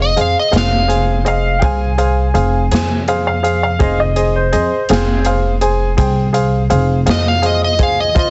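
An overdriven slide guitar carries the melody up front in this soulful, mournful slow blues in 12/8, over a brilliant baby grand piano and a woody, dark pizzicato upright bass, with an airy big-band drum kit of hi-hat, punchy kick and snare joining at 0.2 seconds. A worn, slightly detuned upright piano with audible action noise adds a second line between 1.3 and 5.3 seconds, all on a single F minor chord. The sound is heavily compressed and radio-like, with dulled highs and light reverb, and the recording is cut from a longer piece.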